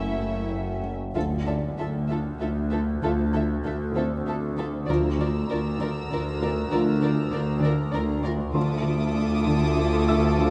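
A detuned, chorused drone with moving overtones sets an uneasy, tense suspense-score mood at 97 BPM in 3/4 and D minor, beneath intimate sul tasto string sections playing a shadowy violin melody, a warm violin second line, viola accompaniment, a cello riff, a woody cello bass line and a double bass line, while a boxy felt-muted upright piano adds soft texture with audible action noise, a mellow, distant French horn section enters with sustained chords at 1.2 seconds, and a high violin texture returns at 4.9 seconds, all within a moderate scoring-stage reverb.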